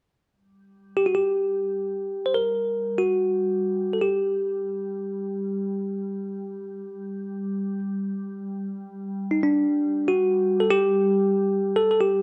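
Close, detailed microphones and a moderate scoring-stage reverb frame this solemn, longing fragment of a Caucasian folk lament, where a glassy, ethereal FM pad with ensemble chorus sustains a G3 drone from 0.3 seconds while a bright, bell-like tine electric piano enters up front at 1.0 seconds to carry a clean melody between D4 and C5.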